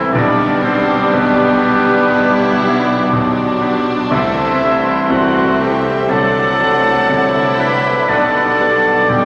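Lyrical and passionate, this brief excerpt from a romantic movement for piano and orchestra unfolds in a relaxed 4/4 with a rubato feel, tuned to A4 = 444 Hz. A polished grand piano shares the melody with a bowed violin section whose vibrato and smooth top give the line a lush focus, while a clear oboe, a bright clarinet, a second, even-toned violin section and an airy large flute ensemble entering at 0.1 seconds weave second lines around it. Underneath, a distant viola section and a mellow, soft-attacked bassoon fill out the accompaniment, and a roomy French horn section holds sustained chords alongside a very quiet, loose trombone section. A close-miked trumpet section adds faint stabs, and it and the trombones drop out at 8.5 seconds. The bass is carried by a very quiet cello section, a mellow tuba and a rich double bass section, all set in a wet scoring stage reverb as the harmony moves from G/B through Am/C and D7/C back to G/B.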